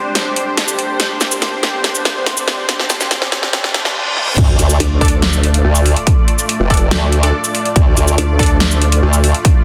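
Aggressive and menacing, this heavy wobble dubstep excerpt at 142 BPM in half-time D minor opens with a lush, detuned sawtooth pad pumping under chorus and phaser, background risers, a reverse cymbal and sub drop, and a drum kit with a huge snare and metallic hats building through a fill until the drop at 4.4 seconds, where a punchy electronic kick and an overdriven, formant-swept wobble bass hit up front on a D minor chord, joined by a nasal, resonant vowel-sweep wobble bass in short bursts and bright, orchestra-hit-like synth stabs with tape echo, all pressed into a dense, heavily limited modern master.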